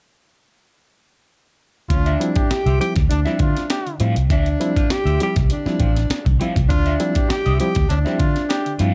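At 1.9 s the whole band enters together on a single Dm11 chord in this driving, hypnotic funk excerpt. A breathy, subtoned alto saxophone carries the melody with scooped notes and light vibrato, bathed in plate reverb and tape echo, while a brilliant, close-miked trombone plays a second line alongside it. A slightly broken-up, lo-fi electric guitar with wah and spring reverb provides accompaniment as barky electric piano stabs pulse with fast tremolo, all over a round, foam-muted bass and a gritty, compressed breakbeat kit with a thumpy kick sitting up front in a dark production.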